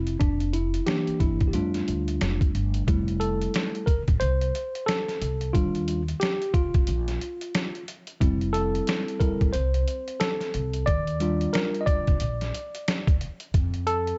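A swung groove from a gritty, compressed, pitched-down sampler-style kit with a thumpy kick and medium-tuned snare carries this smooth, warm jazz-hop fragment, as a worn, slightly out-of-tune tine electric piano solos over Fmaj9 and Ebmaj9 changes while a woody pizzicato upright bass holds the low end, set in a dark, warm, dry production.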